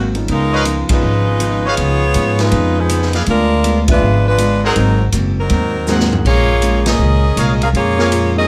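The recording sits in a moderate small-room ambience, with the saxophone section and upright bass up front and the piano and guitar in the background. This energetic big band swing passage, cut from a longer piece, carries a strong swing feel throughout. A clear, tight saxophone section plays the melody with vibrato and a touch of plate reverb, while a bright, smooth-topped trumpet section adds ensemble stabs. The woody, thumpy pizzicato upright bass anchors the harmony, supported in accompaniment by a warm, open baby grand piano and a dark, clean, picked hollow-body electric guitar. The distant, roomy drum kit, with its boomy kick, medium-tuned snare and rolled-off top, plays a fill from 5.9 to 6.3 seconds, and the full band punctuates the phrases with recurring accents.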